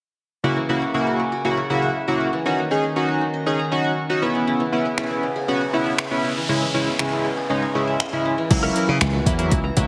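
A glossy, chorused polysynth and a bright-edged, plectrum-plucked qanun open this bittersweet, energetic dance-pop excerpt. The retro synth chords carry a filter sweep and pump with the sidechain, while the qanun's arpeggios also pump and trail off in delay. At 5.0 seconds a deep house drum kit arrives with an overdriven deep kick, hi-hat, finger snaps and crash cymbal, joined by an electronic noise sweep; then at 8.5 seconds a punchy, glassy slap bass and a clean, direct-recorded electric guitar riff with analog chorus come in, and the whole mix has a heavily compressed radio sound in a digital room reverb.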